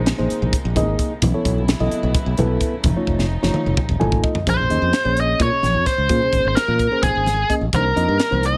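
A fast 7/8 groove at 258 BPM in eighths drives this intense, slick electric jazz fusion passage, with a crisp, high-tuned drum kit, punchy fingered bass, soft-handed congas and a mellow, reedy electric piano running throughout, while a bowed string section with a gut-string tone holds sustained chords until 4.5 seconds over shifting suspended and altered harmony. A drum fill and an electric piano fill lead into the Bb minor passage at 4.5 seconds, where a biting, overdriven lead guitar with slapback echo takes the melody up front. The whole sits in a small room.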